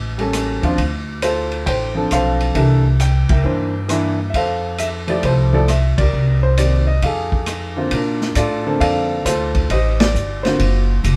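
A woody pizzicato upright bass opens this relaxed, swinging jazz piano trio fragment, joined at 0.2 s by a smooth, deep-voiced vintage grand piano carrying the melody and a drum kit with dark cymbals, punchy kick, rim click and a rolled-off top, all playing live together in a studio room with moderate reverb, marked by band accents at 3.2 s and 9.9 s and moving into a new section at 7.9 s over lush extended chords.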